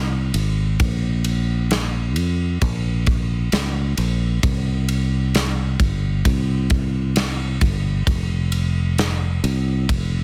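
A round, dark fingered electric bass opens this heartbroken pop ballad excerpt, sitting up front in a dry mix with a punchy, amped tone that stays low in its register. Just after it, a modern studio drum kit joins with a punchy kick, a medium-tuned snare and bright ride cymbal, recorded in a studio room with a mid-forward character. The emotional, unhurried straight feel is pressed into a dense, heavily limited modern master.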